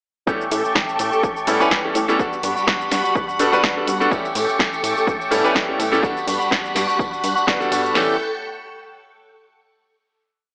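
Filtered disco house at 125 BPM in A mixolydian, feel-good and sunny, swinging lightly on the sixteenths over a four-on-the-floor kick and an up-front programmed backbeat from two punchy, dry analog drum machines, with cabasa and open hats, while a distant tambourine joins at 4.1 seconds. A bright, brilliant grand piano plays a rhythmic rootless chord riff through a phaser, a dark, clean envelope-filtered guitar strums sixteenths in upper chord shapes, a plucky, funky analog bass jumps octaves, and a lush string machine holds sustained chords with phaser, ensemble chorus and 12-bit sampler grit, the melodic parts all pumping with sidechain compression. The whole piece alternates A7 and Gmaj7 in a drop that lands on a final A7 chord at 8.0 seconds, heard through an AM-radio filter and moderate room reverb.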